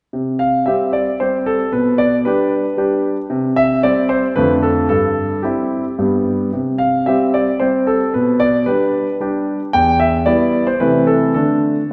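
Graceful and playful, this short cut from a longer classical-period piano sonatina in C major moves at 112 BPM in a straight 3/4, with a solo concert grand, clear, natural and up front with a deep bass and long sustain, spanning E2 to G5 from 0.1 to 11.9 seconds over open fifths and chords such as G/B, Dm/F, Em and Am/C, all set in a wet scoring-stage reverb and recorded in a church or concert hall, with highs that stop at 10.7 kHz.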